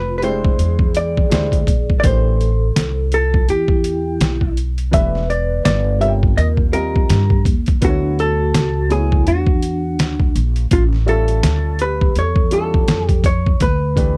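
Gritty, overdriven sampler-style drums with a thumpy kick sit up front in this cool, smoky, swung jazz-hop excerpt, alongside a woody pizzicato upright bass, a clean, dark hollow-body jazz guitar carrying the melody, a mellow vibraphone in the background with fast motor vibrato that drops out at 13.2 seconds, and a vintage grand piano with short sustain, all captured in a dry, close 1970s-style studio sound.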